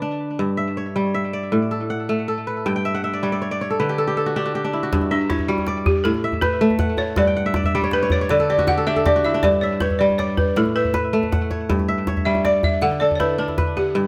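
A bright, ringing kora opens this hypnotic, joyful West African piece alone, its fingerpicked arpeggios crisp and up front with a touch of tape echo, moving in a straight 12/8 at 106 BPM in G lydian. At 4.9 seconds a soft-handed, close and dry djembe enters as the woody balafon, struck with hard rubber mallets and carrying a buzzing, airy plate reverb, takes a solo that runs to 13.9 seconds. The kora adds a fill from 7.2 to 9.4 seconds in a light room sound, and the passage is cut from a longer performance.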